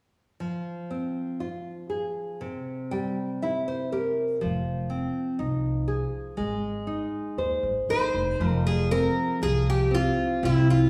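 A mournful fado-style ballad in F minor, this short cut from a longer piece moves at a slow, rubato 59 BPM in 2/4, tuned a touch flat with A4 at 437 Hz. A full-bodied, fingerpicked nylon-string guitar opens the piece on its own, sitting up front and moving through Fm, C, Fm7 and Ab, with a fill at 2.4 seconds. A woody, growly upright bass enters at 4.4 seconds, played pizzicato with a dark tone. At 7.9 seconds a picked twelve-string acoustic guitar takes the melody, its octave-doubled, shimmering voice set forward in the mix as the harmony settles onto F5. A wet recital-hall reverb lends the longing mood the spacious air of a church or concert hall.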